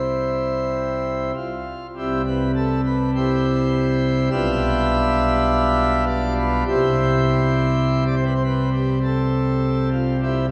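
Classical chorale-style music for solo pipe organ, majestic and serene, unfolds in C major at a slow, rubato 51 BPM in 4/4, its full principal chorus in romantic voicing sitting up front from B1 to E5 and moving from C through G7/B back to C by 6.7 seconds, all bathed in the long, wet reverb of a church in this short extract from a longer piece.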